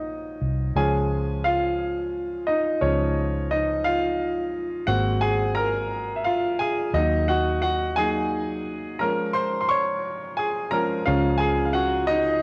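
Steeped in a lush hall reverb and the softened grain of a home cassette recording, this heartfelt, swaying pop passage in 6/8 sets a clear, polished baby grand piano up front with a cassette-tape tint, carrying the solo from 0.8 s over chords that move from Gbmaj7 through Db, Abadd9 and Ebm back to Db, while a dark, round, foam-muted vintage electric bass with transformer saturation gives a punchy low footing throughout this fragment of a longer piece.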